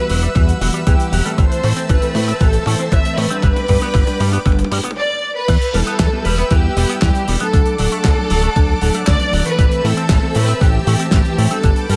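A straight 4/4 italo disco groove at 117 BPM in E minor drives this bittersweet, danceable 12-second excerpt, where a thumpy electronic kick entering at 0.4 s and a damped 70s drum kit with a fat snare and gated reverb, opening on a drum fill, back a saturated, detuned analog bass, while dark fingered guitar stabs with analog chorus, a background envelope-filtered guitar arpeggio with 12-bit grit and tape echo, a lush airy unison pad, and a warm symphonic violin section singing a vibrato melody through tape echo move from Emadd9, Am and G into Em, D and Am.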